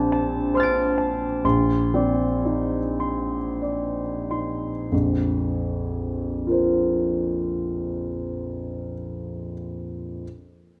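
A clear concert grand piano plays alone in this dreamy, luminous fragment of impressionist classical music, cut from a longer piece. Its voicing spans from Bb1 up to D7, pairing a deep bass with a long, natural sustain, and the instrument sits up front in a moderate recital hall reverb. The gently rubato 6/8 pulse slows over the opening 4.9 seconds as lush harmonies drift from Bbmaj9 to Cm9/Bb. At 4.9 seconds a second section opens on a Bbsus2 chord, leaving the harmony suspended and unresolved. The whole passage lasts just over ten seconds, its soft glow lingering in the hall's decay.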